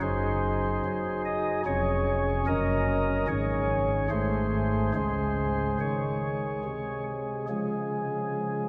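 A soft, up-front pipe organ on flute stops, with baroque voicing, gentle chiff and tremulant, plays alone through this short excerpt of a majestic yet serene classical chorale in Db major, moving at a rubato 73 BPM in 3/4 and reaching from a deep F1 up to a high Eb5, all set in a lush church reverb that lingers for about three seconds.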